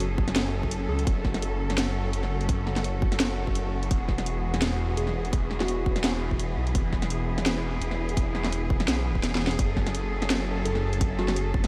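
A light reverb and a small-room ambience on the drums give this heavy, dark half-time drum and bass excerpt a close, punchy sound. Up front, a layered kit with a cracking snare and hi-hat plays from the start, a hard-clipped electronic kick joins at 0.2 seconds, and a brief drum fill arrives at 9.2 seconds. A thick, swirling detuned saw bass, saturated and washed in phaser, sustains low beneath a rich chamber cello section whose bowed chords, smooth and even with vibrato, pump against the sidechain. In the background, a soft, round FM synth lead with a keys-like, warbling vintage tone and chorus and delay plays short melodic phrases that decay quickly. The harmony moves from F# minor to Eadd9 and back to F# minor, with a lightly swung sixteenth-note feel underpinning the half-time groove.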